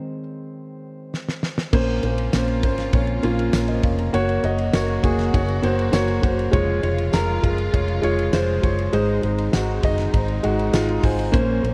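A dark, mellow grand piano sits up front in this uplifting, hopeful piano-driven pop excerpt at 100 BPM in 4/4, opening alone with a brief solo before the band arrives, its intimate tone carrying audible action noise. A damped 70s drum kit enters with a fill at 1.1 seconds, dry and up front, with a fat snare, tight kick and bright cymbals across crash, hi-hat and ride. At 1.7 seconds a foam-muted fingered electric bass joins with a round, punchy low end, while a woody, bowed string section with vibrato fills in lush sustained chords in the background. A jingly tambourine adds a very quiet shimmer, and the harmony moves from Ab through Bbmadd9, Gb and Db/F back to Ab, with the piano adding a fill near the end. Light studio reverb and the worn, warbling pitch drift of old cassette tape color the whole recording.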